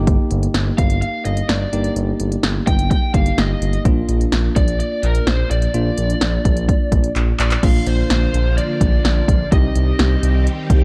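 A dark, warm production with a digital ambience frames this driving, nocturnal synth-pop excerpt, moving at 127 BPM in a straight 4/4. Up front, a punchy, layered deep house drum kit sets the pulse with kick, snare, smooth hi-hats and handclaps, while a smooth, nasal synth bass with a fast attack and vibrato sits in the low register alongside it. A bell-like tine electric piano adds clean, bright accompaniment from the start, and from 0.8 seconds a picked lead guitar, overdriven through a small cranked amp, carries the melody with a gritty, shadowy tone. The harmony moves from Eb/G to Bb, and a drum fill at 7.2 seconds leads into a new section where a swirling, warbling string machine enters at 7.6 seconds with slow-blooming sustained chords treated with ensemble chorus and phaser. The chords arrive at Cm near the close as the fragment breaks off.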